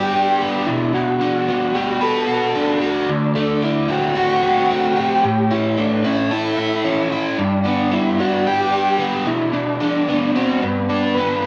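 Hypnotic and trippy, this rock excerpt at 112 BPM sets a bright, overdriven, double-tracked electric guitar riff, compressed and up front with flanger, alongside a reedy vintage combo organ melody with heavy vibrato and slapback echo, both playing throughout the 11.5 seconds over a G, Bm7, D7 and A progression, bathed in a wet echo chamber reverb.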